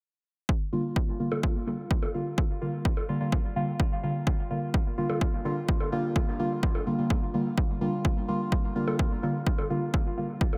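A punchy, overdriven analog kick drives a straight pulse in this cavernous dub techno excerpt, sitting up front from 0.5 seconds onward. Just after it, a deep, mellow chord stab settles on a single minor seventh chord, its soft tone blending triangle, sawtooth and sine waves with a fast attack, a decaying tail and a filter sweep. The stab is dark and up front, colored by chorus and phaser, pumping through sidechain compression, and trailing dub echoes. Electronic bongos join at 1.3 seconds, overdriven, re-recorded in a small room, pumping in the same way and scattered through dub echo, sitting further back in the mix. The whole track is soaked in a moderate cathedral reverb, giving a dreamy, deep sense of space, and it is clearly cut from a longer piece.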